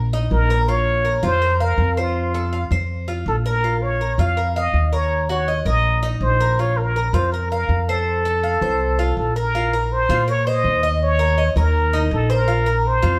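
A plunger-muted trumpet carries the jazz-style solo melody up front, its clear wah-wah tone touched with light vibrato and a plate reverb, entering at 0.3 seconds over a nostalgic Cuban son and guajira groove at 163 BPM in straight 4/4. Beneath it, a woody, thumpy upright bass on gut strings plays pizzicato in a dark register, while a bright, metallic Cuban tres picks arpeggios on its double strings, some doubled at the octave. Heard from further back in a reverberant studio, this excerpt cut from a longer piece sits in Bb minor and turns to Bb harmonic minor at 9.5 seconds.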